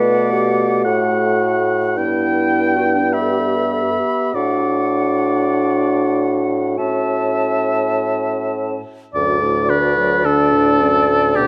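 Close, detailed microphones and a light reverb give this brief cut from a longer classical piece an intimate, finely etched sound. It is a slow, lyrical and tender romantic movement for wind quintet in D major and 4/4, moving with rubato at roughly 48-55 BPM and tuned to A4 = 435 Hz. A bright, airy silver concert flute carries the tongued melody with vibrato, sitting softer in the balance than the up-front oboe, whose warm, smooth second line has a light vibrato. A dark clarinet and a mellow, distant, roomy French horn fill in the accompaniment, while an up-front bassoon supplies the bass with a gentle vibrato of its own. All five instruments play throughout, moving through Bm7, Em/G, D/A and A before the opening material returns at 9.1 seconds over a D chord.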